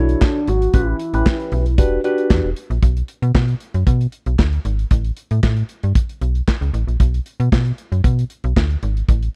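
Slick and late-night, this early-eighties boogie funk moves at 115 BPM in a straight 4/4, set in E dorian and cut from a longer piece. It opens on a Bm9 to A7 to Em9 progression, where a soft, round, octave-layered synth lead with a dark sub-octave body, chorus, vibrato and slapback echo carries a short melody between D4 and F#4 before stopping at 1.7 seconds. Beside it, a worn, slightly out-of-tune tine electric piano plays accompaniment through a combo amp, lightly overdriven and coloured by phaser, until 2.5 seconds. A snappy, metallic-attacked FM bass, digital yet mellow in its decay, runs from E1 to B2 up front from the very start to the end, and keeps going when the harmony drops away at 2.8 seconds. The acoustic studio drum kit, entering at 0.1 seconds with a tight kick, medium-tuned snare, hi-hat and handclaps, sits loudest in a dry, close 1970s-style studio sound.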